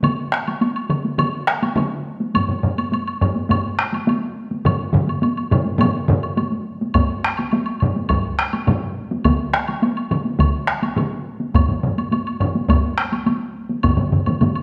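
A straight 4/4 pulse drives this powerful, ceremonial excerpt of Japanese traditional taiko drumming, where two up-front, band-limited taiko groups struck with heavy and hard sticks open alongside a close, woody woodblock; a compressed, saturated taiko group joins at 2.4 seconds, and a small-room taiko group with hard sticks enters at 7.0 seconds, all set in the resonant reverb of a recital hall.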